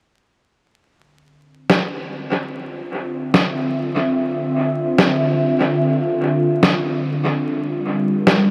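A warbling, detuned sawtooth pad with slow attack and chorus rises out of a fade-in at 2.2 seconds, sustaining nostalgic lo-fi chords that move from Dm9 to Gm7 at 7.5 seconds, while a pitched-down, muffled, sampler-style snare with small-room ambience and dub echo sits up front from 1.7 seconds in this deep, spacious ambient dub fragment, cut from a longer piece and washed in huge reverb and vinyl crackle.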